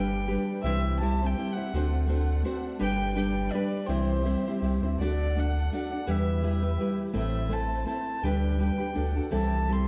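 A dark, reverberant recital-hall sound with a touch of lossy compression frames this short cut from a longer mariachi piece, festive yet romantic at 165 BPM in a swung 3/4 and in C major. Up front, a fingerpicked nylon-string guitar plays classical-style accompaniment, joined by a deep, smooth sine sub bass that holds the low end with clean, sustained notes. A lone bowed violin carries the melody with a nasal, reedy gut-string tone in period style, sounding distant in the mix. Behind it, a lush symphonic violin section holds chords with vibrato, soft attacks and expressive portamento. A new section begins at 5.0 seconds, passing through minor chords before closing on a C6 chord at 9.3 seconds.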